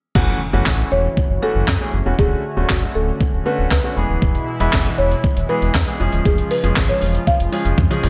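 Bright, 1980s-style digital production with light reverb gives this short dance-pop clip a driving, energetic feel. A compressed, gritty breakbeat sampler-style kit sits up front with a thumpy kick, high-tuned snare, handclaps, hi-hat, shaker, crash cymbal and toms under gated reverb, ending on a drum fill at 7.8 seconds. Beneath it, a deep sine sub bass with an added octave and a clear, polished baby grand piano pump with sidechain compression, while a shimmering, retro pulse-width pad with chorus holds sustained chords in the background. A very quiet electronic impact marks the opening, and from 0.9 seconds a woody, buzzing marimba played with soft mallets carries the melody, its round, dark tone given a digital delay. The harmony moves through F#m7, Dmaj7, E and C#.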